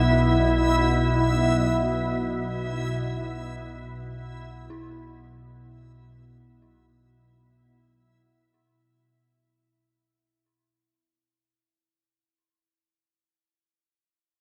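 Dark ambient drone in free time, ominous and cavernous, cut from a longer piece and fading out over its first 7.2 seconds under a wet cathedral reverb with a dark production. Up front, a calm organ-like drone with a wave-folded sine tone and ensemble chorus sustains low until 7.3 seconds, beside a reversed, swelling granular texture that sounds bright and dreamy and stops at 7.2 seconds. Far in the background, an eerie, inharmonic, detuned synth bell with a mellow edge plays chorused, delayed arpeggios in a tuning set a little below standard pitch, lingering alone until 12.4 seconds.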